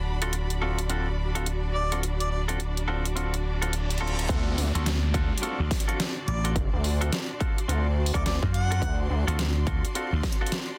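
Glitch hop at 106 BPM with a swung 16th-note feel, gritty and swaggering, this clip from a longer piece opens on a D7#9 chord with an aggressive, nasal sawtooth synth bass driven by tube saturation, a clear bowed string section pumping beneath, twangy clean electric guitar stabs roughened by 12-bit sampler grit and tape echo, and an overdriven dubstep kit of hi-hat, rim click and deep snare. A jazz-style harmonica solo with light vibrato, tongue slaps and scooped notes drifts in briefly through tape echo, and a reverse cymbal in the background rises into the drop at 4.3 seconds. There a punchy, up-front overdriven electronic kick lands, a round, amped vintage slap bass follows at 4.8 seconds, and the harmonica returns at 6.3 seconds over a dense, heavily limited master in a digital ambience.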